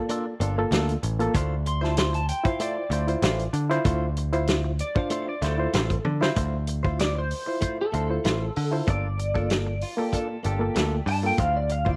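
A smoky, brooding soul blues excerpt opens with a slightly broken-up amp guitar line soaked in tape echo over a barky, reedy electric piano shimmering with fast tremolo, as a dry, punchy drum kit with a fat snare, a twangy direct-recorded guitar playing stabs and a picked bass sitting up front join almost at once. A drum fill closes the first section at 6.4 seconds. From 7.0 seconds a second fingered amp guitar takes the melody through analog chorus, moving between minor ninth chords in a small, lightly reverberant room.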